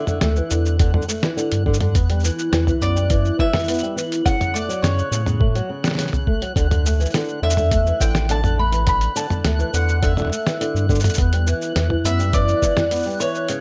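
A woody, picked mandolin carries a wistful melody over dark, boxy flamenco guitar arpeggios with audible finger squeak, both washed in plate reverb and delay, while a bright, twinkling granular texture shimmers in the background in this delicate folktronica piece at 104 BPM in E dorian, moving through Dsus2, Em and F#m. The mandolin also carries a vintage 12-bit sampler grit. A lo-fi, muffled drum kit with a fat snare, hi-hat, shaker and toms sits up front from 0.1 seconds, joined by a round, warm, sine-like sub bass and a thumpy, pitched-down, tape-warm electronic kick that anchor the low end.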